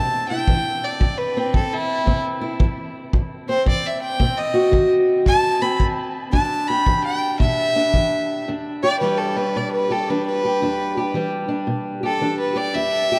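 The recording sits in a vast, echoing space, drenched in a wet cathedral reverb with a 6.0-second tail. This is a brooding, smoky slice of acoustic country blues in E minor, cut from a longer piece and moving at 112 BPM in 4/4 with a 65% swing on the eighths. A single bowed fiddle carries the melody from start to finish, up front with a gut-string, reedy tone and a smooth top, taking a solo across both passes of the same section. Beneath it, a fingerpicked steel-string parlour guitar gives a dark, boxy accompaniment, also placed up front. A punchy kick drum played with brushes joins at 0.5 seconds and drops out at 8.1, sounding roomy and distant despite sitting forward in the mix. The harmony moves from C to B and settles on Em7 at 6.3 seconds.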